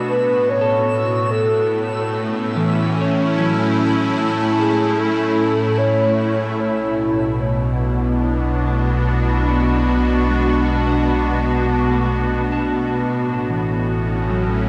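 Ambient, melancholic and spacious, this cut from a longer piece, recorded at home on cassette, sets a bright, morphing, detuned wavetable pad holding sustained chords up front beneath a twangy clean electric guitar's tape-echoed arpeggios in the background, while a breathy flute-like synth lead with vibrato and a twinkling, sparkling granular shimmer stop by 6.6 s, where a deep, round sub bass enters and the guitar fades in, everything sitting in a wet spring-reverb room.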